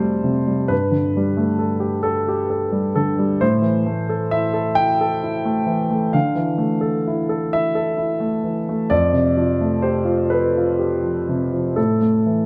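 Close, detailed microphones capture a polished grand piano, present and up front in a moderate concert hall reverb. This reflective, melancholic neoclassical minimalist piece in A minor unfolds at 44 BPM in a rubato 6/8, with the solo piano spanning F2 to G5 across a 12.5-second fragment cut from a longer work. Its harmony moves from Fadd9 through Gsus2, Am and Dmadd9, returns to Fadd9, and settles on A5 at 11.8 seconds.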